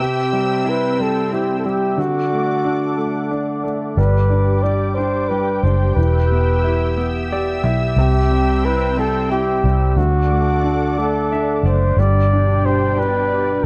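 This short cut from a longer piece has a dry, close sound in the manner of a 1970s studio, with a touch of studio reverb. It is a heartfelt, romantic pop ballad in G major and 6/8, moving at a slow 60 beats per minute with a straight feel and tuned slightly below standard pitch. A mellow flugelhorn sits up front with the melody, played jazz-style with scooped notes, while a clear concert grand piano supplies intimate, polished accompaniment with deep bass, long sustain and audible action noise. Beneath them, a lush, airy synth pad of detuned sawtooth voices holds thick sustained chords with a slow attack, colored by chorus and phaser. A round, punchy, foam-muted electric bass with a dark, amped tone enters at 4.0 s and sits prominently in the mix. The piano adds fills at 7.0 s and 11.0 s as the chords move from C through D, G and E minor, and the progression arrives on G as a new section begins at 12.0 s.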